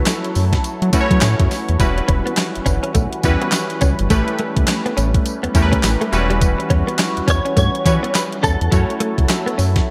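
A crisp, overdriven 8-bit drum machine drives a bouncy 104 BPM new jack swing groove in 4/4, its thumpy kick, medium-tuned snare, hi-hat, handclaps and tambourine sitting up front with gated reverb and a 61% swing on the sixteenths. Under it, a round, deep analog bass built from sawtooth and sine tones holds down the low end with a fast attack and dark sustain. Detuned analog keys with a filter sweep and chorus carry the accompaniment through chords moving from F#m7 to Em69 and A9 in E dorian. Behind them, a swirling, nasal, wave-folded pad with phaser and chorus slowly evolves in the background. A clean, picked, direct-recorded electric guitar plays the melody in short bursts, first at the very start and again from 7.3 seconds, while a second, brighter clean guitar enters at 2.0 seconds with a compressed riff tucked into the mix. The confident R&B excerpt carries a bright 1980s-style digital sheen and a moderate plate reverb.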